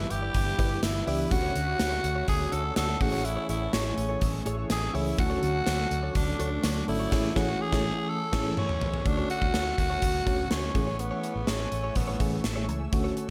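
A growling tenor saxophone leads this uplifting, glossy slice of 1980s-style pop at 124 BPM in A major, its breathy, raspy lead sitting up front with light vibrato and a diffuse ambient delay trailing behind it. Beneath it, an FM electric piano with tremolo plays mellow, quickly decaying accompaniment, while a shimmering, ethereal pad holds sustained chords in the background with chorus and its own reverb. A clean, direct-recorded electric guitar picks a compressed riff through analog chorus and delay, and very quiet synth brass adds dark, detuned sawtooth stabs until 8.5 seconds. A foam-muted fingered bass gives a round, punchy low end, and a gated 80s drum kit with a punchy kick, bright cymbals and tambourine drives from 0.1 seconds, with a band accent and a drum fill that lead into a new section at 9.1 seconds. The harmony starts on G6 before moving between Dmaj7 and Amaj7, and a plate reverb with small-room ambience leaves the whole mix dreamy and soaked.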